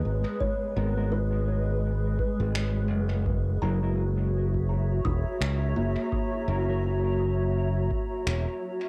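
A blurred, evolving granular pad and a woody, ringing kalimba in the background open this hazy, meditative ambient dub excerpt at 84 BPM, with a swung 4/4 feel and chords moving from G#m to F#7. A bright, punchy fingered electric bass sits up front alongside a deep analog kick, while a dark, clean electric guitar adds chorused stabs with dub echo from 0.8 seconds and airy finger snaps join at 2.5 seconds. The home cassette recording gives the pad, kalimba, guitar, snaps and kick a tape character under a light reverb, and the kalimba also carries an analog delay.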